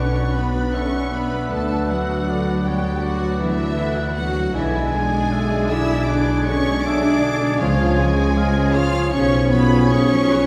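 Heard from further back in a reverberant scoring stage, this solemn, melancholic slow romantic orchestral passage in B minor moves at 79 BPM in a rubato 4/4, with a lush, vibrato-rich violin section carrying the melody over second lines from a second violin section, warm oboe, mellow clarinet and hollow silver flute, mellow bassoon and very quiet viola accompaniment, sustained chords from mellow French horns and clear trombones, mellow trumpet stabs, a bass of mellow tuba, cellos and up-front double basses, and hard-mallet timpani entering at 7.6 s as the harmony shifts to C#.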